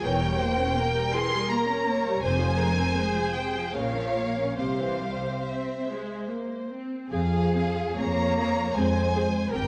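Moving in a rubato 3/4 between 66 and 85 BPM, this brief, solemn and melancholic fragment of a slow romantic movement for string orchestra in F minor passes from an Edim7 through Fm, Bbm and C before settling back on Fm at 7.1 s. A focused, lush symphonic violin section carries the melody up front with vibrato, an expressive chamber violin section adds a close second line, an intense viola section fills the accompaniment, and a smooth, distant cello section sits in the background above the even, bowed double basses. The recording is bathed in a scoring-stage reverb and carries the worn, warbly pitch drift of old cassette tape.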